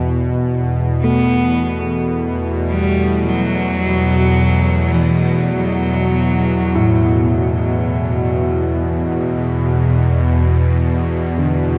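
Dark ambient drone at 54 BPM, desolate and unsettling, cut from a longer piece and bathed in a cathedral reverb with a 6.0-second tail. A tense, nasal, detuned string-like drone sits up front from the start beside a very quiet, pure singing bowl rung with a wooden striker. At 1.0 s a clear, biting cello with light vibrato enters over a move from E5 to Esus2, its line trailed by delay, and from 6.8 s a warm grand piano plays delayed arpeggios in the background, intimate, with its action noise audible.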